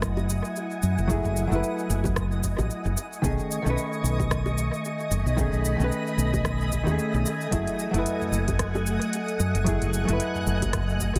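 A relaxed, wistful sunset chillout excerpt in F# dorian at 112 BPM with a swung sixteenth feel opens on an up-front, round fretless bass with tube saturation, a dark, clean hollow-body jazz guitar through analog delay, silky string-machine chords with ensemble chorus, and a twinkling granular shimmer, with tight, high-tuned bongos joining in the background at 0.2 seconds. A deep house kit with smooth hats, cabasa, rim click and toms sits alongside a punchy electronic kick, while the harmony moves from F#m9 to B13 at 3.0 seconds and back to F#m9 at 7.5 seconds in an echo-heavy mix with light reverb.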